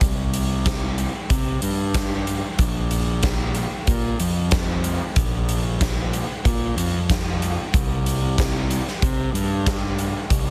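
A dense, heavily limited modern master with little reverb and some lossy compression artefacts frames this short cut from a longer rock piece steeped in shoegaze and dream pop, its mood melancholic and dreamy in a straight 4/4. A fuzzed, overdriven picked electric bass sits up front, punchy and direct from the amp, ranging from Bb1 to C3. A huge arena drum kit with a hall-like acoustic character, a punchy kick, medium-tuned snare and hi-hat plays alongside it from the start to about 10.4 seconds.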